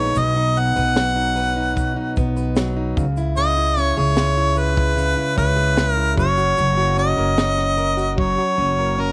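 A relaxed, straight 4/4 pulse at 75 BPM carries this easy-going, carefree acoustic pop excerpt in B major, with a small room ambience around the players. Up front, a clear harmonica sings the melody with light vibrato and scooped notes in a pop style, ranging from A#4 to F#5. A fingerpicked, plugged-in steel-string acoustic guitar with fresh strings and an auditorium body provides warm accompaniment, moving through B, C#m and F#. An upright bass played pizzicato on gut strings adds a woody, dark, thumpy low end. A compact cocktail drum kit enters at 0.2 s with a punchy kick, a high-tuned snare and shaker, all dry, and plays a fill from 8.2 s before stopping at 8.4 s as the fragment closes at 9.1 s.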